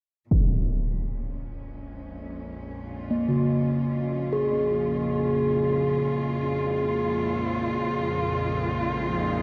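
A huge, low-passed impact and a muted, veiled cello section fading in on sustained Bb minor chords with shimmer reverb open this unsettling dark ambient drone at 64 BPM, joined at 1.0 s by a tense, detuned sawtooth bowed-like drone fading in beneath with phaser and vibrato, while from 3.1 s an up-front bronze singing bowl rings out meditative metallic arpeggios through analog delay and shimmer, the whole set in a dreamy plate-reverb mix with a cassette-tape cast.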